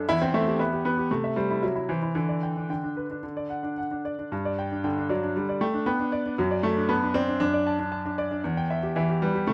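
Rubato phrasing with uneven beats carries this graceful, cheerful classical-period piano sonatina in G major at 115 BPM in 4/4, a nine-and-a-half-second fragment of a longer piece in which a solo baby grand, heard close and intimate with its action noise audible and a natural, clear tone under light reverb, spans E2 to A5 through chords moving from Em at 0.1 s through C6, G/D and D to G at 4.3 s, then D/F# and back to Em at 8.4 s.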